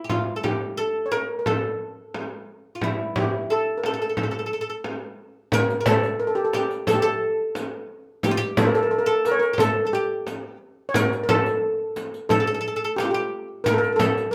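Arabic maqam ensemble music in A maqam hijaz at 89 BPM, hypnotic and melancholic, in which a shimmering steel pan struck with medium rubber sticks carries the melody up front over a bright, woody, plectrum-plucked fretless oud playing a second line, with a small frame drum throughout and a soft-handed riq with dark jingles joining in the background at 5.5 seconds, all in moderate studio reverb in this short cut from a longer piece.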